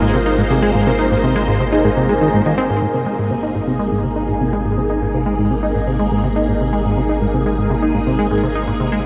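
A vast, echoing space soaks this ambient, sequencer-driven space music in a huge, lingering reverb, giving this fragment of a longer piece an expansive, luminous glow. At 123 BPM in a straight 4/4, on an Ab suspended chord in Ab major, a punchy, funky analog bass riff sits up front. Its sawtooth and pulse-wave tones snap with a filter pluck and carry lush chorus, delay and a gritty 12-bit sampler edge. Beside it, a bright, swirling vintage string machine holds sustained chords with a soft attack and long release, coloured by ensemble chorus and phaser. A fingerpicked concert harp rings out arpeggios with delay in the background until 4.8 seconds, while a deep, round sine sub bass anchors a low Ab underneath. A very quiet, breathy tuned noise texture drifts through like wind, slow to arrive and slow to fade.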